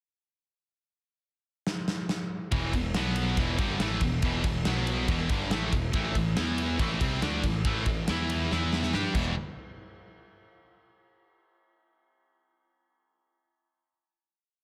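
A straight, driving 4/4 rock groove sets the pace of this short, aggressive hard rock piece. The big acoustic drum kit comes in with a fill at 1.7 seconds, its dark, smooth sound in a large room built from a punchy kick, a medium-tuned snare, crash and ride cymbals. At 2.5 seconds the full band crashes into a power-chord riff: a bright, high-gain, double-tracked guitar sits up front, while a sludgy, overdriven second guitar, also double-tracked, churns in the background. A growly, punchy picked electric bass with a direct tone drives steady eighth notes and doubles the guitar riff. Another drum fill leads into a final hit at 9.4 seconds that closes the piece, all under studio reverb and a dense, heavily limited modern master.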